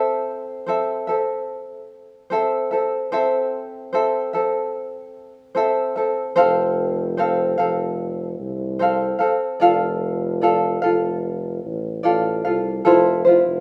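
This acoustic pop excerpt has a tender, reflective mood, moving at an unhurried 74 BPM in a straight 4/4 in A minor, tuned slightly low to A4 = 439 Hz. A fingerpicked tenor ukulele carries the accompaniment from the start, light and up front, its range sitting between C4 and F5. At 6.4 seconds a distant, roomy tuba joins on the bass line, low between F1 and C2, with a light vibrato and a warm, pop-style tone that sits well behind the ukulele. The harmony settles on Am, then moves through F and Dm/F before touching Fmaj7 near the close. Light reverb and a small room ambience give the rough home-demo mix an intimate, homespun feel, and the passage is cut off at 13.6 seconds.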